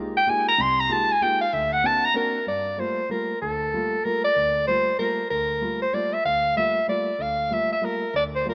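A grand piano opens this brief jazz fragment, and the soprano saxophone joins at 0.2 seconds, taking a solo through the first 2.5 seconds. The tune moves at a brisk 190 BPM in 3/4 with a swung eighth-note feel. It sits in G dorian, tuned slightly under standard pitch at A4 = 439 Hz, with a spiritual yet cool mood. Up front, the saxophone carries the melody with a vintage subtone and soft attack. Further back, the piano accompanies with a warm, natural sound, moving from Fm11 to D7b13 before a new section begins on Gm9 at 2.5 seconds. A lush hall reverb with a 2.2-second decay surrounds the rough, home-demo quality of the mix.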